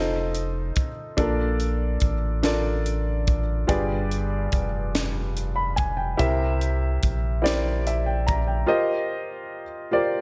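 A light reverb sits over this short cut from a longer slow gospel piece. It moves at 48 BPM in a straight 6/8 in Bb major, with a hopeful, soulful mood. A grand piano sits up front, its tone warm, intimate and natural with audible action noise, carrying the harmony through F7, Bbmaj7, G7b9 and C7 before settling on F9sus4. Beneath it, a deep, round sub bass with a sine-like, sustained tone and fast attack holds the low end until 8.7 seconds. A polished acoustic fusion drum kit enters at 0.3 seconds with hi-hat, a punchy kick and a high-tuned snare, sounding crisp and airy in a studio room before dropping out at 8.5 seconds. Once the bass ends, the piano rings on alone.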